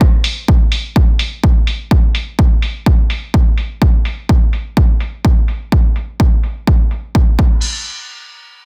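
Sensual and nostalgic, this cut from a longer filtered disco house track runs at 126 BPM in 4/4 with a 54% sixteenth-note swing, as an up-front, tape-warm electronic kick drum plays from 0.0 to 7.5 seconds and an analog drum machine joins at 0.2 seconds with a punchy snare, hi-hat and crash cymbal, its snare, hats, cymbals and room sound all dulled by a low-pass filter while the hats and cymbals pump with sidechain compression, both parts sounding re-recorded in a large room yet carrying little reverb within a dense, heavily limited modern master.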